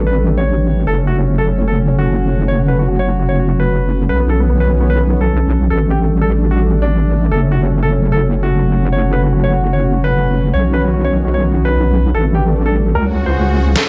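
A heavy, saturated wobble bass with a square-wave tone drives this chaotic, aggressive heavy wobble dubstep passage at 149 BPM in a half-time feel in F# phrygian, as a warm concert grand piano carries the melody through dub echo over a lush, thick sawtooth pad and a moody, sub-octave ambient pad, while a filter sweep runs across the pad until a swell and riser arrive at 13.1 seconds and the dubstep drum kit strikes a deep snare and metallic hats at 13.8 seconds.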